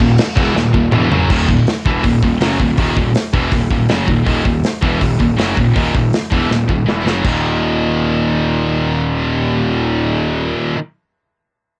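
Dark and relentless, this brief heavy metal passage is cut from a longer piece and driven by a straight pulse. Two high-gain electric guitars carry the riff together in a low register, one heavy and up front, the other bright and scooped, both distorted and tinted by cassette tape grit. Beneath them a fuzz-laden electric bass growls through an overdriven, direct-and-amped tone, holding on until 10.5 seconds. An acoustic drum kit sits close in a small room, with a tight kick, medium-tuned snare, hi-hat, crash and toms, and it breaks into fills at 0.6 and 6.5 seconds before dropping out at 7.3 seconds. The harmony rests on a minor chord before shifting to a bare power chord at 7.2 seconds, and the dry, home-recorded cassette sound gives the whole a raw, close-up edge.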